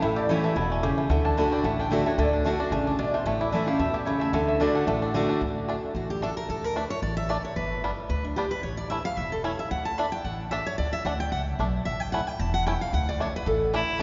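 A lap resonator guitar opens this fast, swung bluegrass excerpt with a solo, its slide tone metallic and nasal, played with fingerpicks. Underneath, a twangy, percussive banjo rolls out arpeggios, while an up-front upright bass with gut strings gives a woody, thumpy, dark pulse. The resonator drops out at 5.1 seconds, and from 5.4 seconds the picked steel-string acoustic guitar takes the solo, a full-bodied jumbo sound heard up close, with the odd finger squeak. Just before the cut, at 13.7 seconds, a clear, smooth fiddle enters on a single bowed note with light vibrato. The whole performance sits in a deep cathedral-like reverb with a dulled top end, giving the virtuosic, rustic playing a cavernous, churchy glow.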